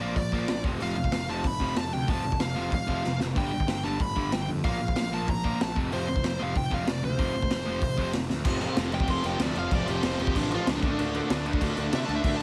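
A heavily compressed, radio-style mix with light studio reverb frames this rowdy, energetic punk rock excerpt at 189 BPM, where a dark, distorted bluesy lead guitar rides over two bright, picked overdriven rhythm guitars (a cranked stack and a raw garage guitar set in the background), a growly fuzz bass, and an up-front, saturated garage drum kit with a punchy kick that enters at 0.2 s and plays a fill at 3.0 s before the lead guitar takes a solo from 8.5 s.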